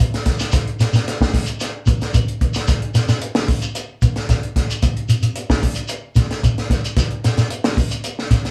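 A straight 4/4 afrobeat groove at 112 BPM, this hypnotic, funky excerpt rides on a compact cocktail drum kit whose punchy kick, high-tuned snare and hi-hat sound dark and smooth with a rolled-off top, sitting up front in the mix. A grainy, mellow shekere joins at 0.3 seconds and carries on to the end at 8.5 seconds. The pair sound like a band playing live in one small room, with moderate studio ambience around them.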